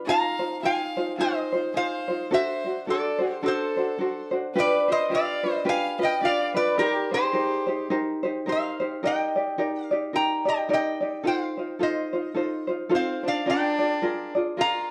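Swung eighth notes at 108 BPM in 4/4 give this Hawaiian excerpt a lazy, rocking lilt, and the mood is dreamy and languid. A fingerpicked tenor ukulele sits up front with a light, warm accompaniment throughout, outlining Fm7, D7, G7 and Cm7 in C minor before the harmony turns to Eb major at 9.0 seconds with Ebmaj7, F7 and Bb7. The lead is a lap resonator guitar played with slide and fingerpicks, its metallic, nasal melody placed up front and bathed in plate reverb. A single bowed fiddle adds a clear, intense second line with light vibrato and a boxy tone, dropping out at 7.9 seconds and returning at 12.9 seconds. A moderate studio reverb and a dark production soften the whole.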